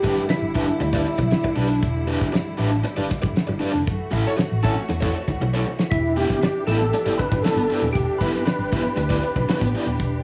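An overdriven, up-front garage guitar accompanies this cool funk excerpt over a dry 70s drum kit with a fat snare and a round, foam-muted electric bass, while a mellow tonewheel organ with slow rotary speaker carries the melody at the start and again from 5.9 seconds, lush bowed strings sit in the background, and a punchy horn section appears briefly at 4.3 seconds during a band accent that ends in a drum fill.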